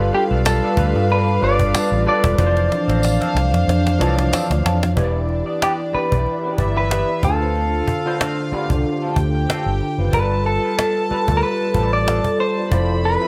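Smooth and cinematic, this short cut from a lush 1970s-style soul groove rides a gently swung 4/4 over a round, punchy muted bass up front and a woody cajon played with hard hands. A barky, gritty tine electric piano with ensemble chorus carries the accompaniment while soft, floating bowed strings add a second line and a very quiet French horn section holds sustained chords until about 4.9 seconds, joined briefly by a jingly tambourine in the background. Two slightly broken-up guitars through a small old amp complete the picture: a twangy wah-and-chorus riff sits back in the mix, and a compressed, picked melody stands up front, with a drum fill from 2.4 to 5.0 seconds leading into the second section under light studio reverb.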